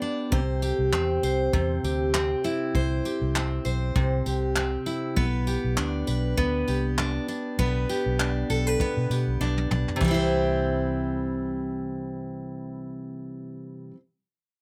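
A bright, full-bodied picked steel-string acoustic guitar sits up front in this sunny, carefree acoustic pop excerpt at 99 BPM in C major, joined by a round, foam-muted vintage electric bass and a brushed vintage drum kit with dark cymbals and a punchy kick that plays a fill from 9.4 to 10.0 seconds before dropping out at 10.2 seconds, all captured with close, detailed microphones and little reverb.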